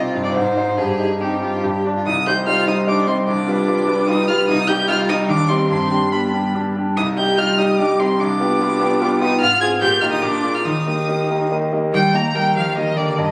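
In a quick, rubato 3/4 at 146 BPM, this urgent, stormy classical-period piano trio movement in C minor has a bright, brilliant concert grand with deep bass and long sustain accompanying up front, a focused, vibrato-laden cello carrying the second line, and a smooth, even, rich-toned violin entering at 0.2 s to sing the melody up front with vibrato, before the harmony turns to Eb major at 9.4 s, all heard through a wet recital-hall reverb in a compressed, phone-recorded room sound with added club reverb.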